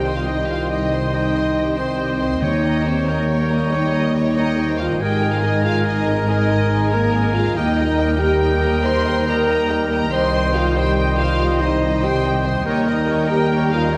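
A mellow French horn section sits at the front of this triumphant, adventurous cinematic passage, holding sustained chords in Eb major at 94 BPM in a straight 12/8. Above them a rich violin section carries the melody with smooth, even vibrato from a distance, while a second violin section adds a lush line with a soft attack and an expressive, smooth top. A clear oboe and a roomy background clarinet weave further second lines, and a focused viola section fills the accompaniment. Bright trombones add sustained chords, a background trumpet places soft-edged stabs, and dark cellos join double basses on the bass line as the harmony moves through Cm, Eb7, Absus2 and Eb. Timpani played with soft mallets sound a round Eb from 2.4 to 3.0 s, and a wet scoring-stage reverb wraps the ensemble in this brief fragment of a longer piece.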